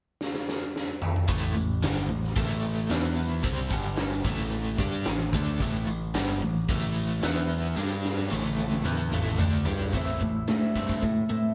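Classic rock with a driving, brooding feel, played live in one room: a huge arena drum kit with a punchy kick opens with a fill at 0.2 seconds, then a double-tracked, overdriven electric guitar riff with tremolo and a growling picked bass enter at 1.3 seconds, a jingly vintage tambourine sits in the background, and a woody, shimmering twelve-string acoustic guitar arrives at 9.9 seconds as the excerpt cuts off.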